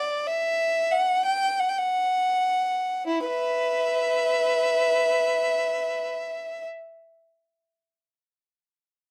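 Introspective and solemn, this brief fragment of a baroque-style suite movement for unaccompanied violin unfolds in E minor at a slow, rubato 40-47 BPM in 3/4, slowing through the opening 3.1 seconds before a second section begins. A single bowed violin, clear and focused with vibrato, sits close and up front, moving between E4 and G5 and sounding until 6.6 seconds. Light reverb and a dark production frame the solo line.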